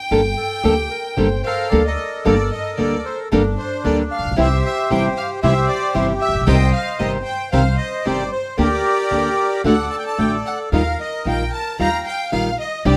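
A reedy, boxy bandoneon carries the melody of this sultry, melancholic tango in G minor, entering at 1.5 seconds up front and set in a plate reverb. Beneath it, a fingerpicked nylon-string guitar with fresh strings supplies the accompaniment, and a pizzicato upright bass on gut strings adds a woody, thumpy low end. A biting, earthy chamber violin section plays a bowed second line throughout, sitting at a quieter level in the mix. A mellow clarinet with a smooth top adds a brief classical-style line from 0.4 to 2.2 seconds. The rubato feel moves around 113 BPM in 4/4 over chords such as Gmadd9, C, Cm, Gm/D, D and Ebadd9, captured with close, detailed microphones and light reverb in this short passage cut from a longer piece.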